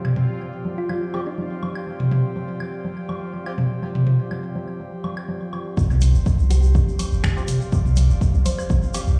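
This quirky, hypnotic minimal techno excerpt opens with overdriven electronic toms, woodblock and congas up front, beneath an airy, breathy pad and a bubbling stepped-filter texture that both pump with sidechain. A round, tine-like thumb-piano-style synth pluck and a hollow, organ-like percussive stab with ring modulation drift through on digital delay, until the drop at 5.8 seconds replaces the bubbling texture with a punchy sub bass with a pitch-drop attack, a deep overdriven electronic kick drum and a grainy tube shaker, joined at 6.0 seconds by a layered techno kit of finger snaps and hi-hat, the whole mix set in a large studio reverb.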